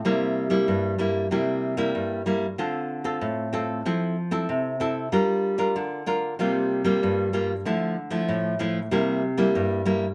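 A straight 4/4 samba pulse at 95 BPM drives this joyful, lively solo for nylon-string guitar, cut from a longer piece and running just over 10 seconds. The fingerpicked guitar sits up front with a full-bodied, deep classical tone, and finger squeak adds a close, human touch. Its range spans G2 to Bb4, and it carries the harmony through C7, Dm7, Fmaj7, Gm7, C7sus4 and Dmadd9 before settling back on C7 near 8.9 seconds. The instrument is tuned slightly below standard pitch, with A at 438 Hz. A moderate studio ambience with a short half-second decay gives the sound a natural, intimate room around it.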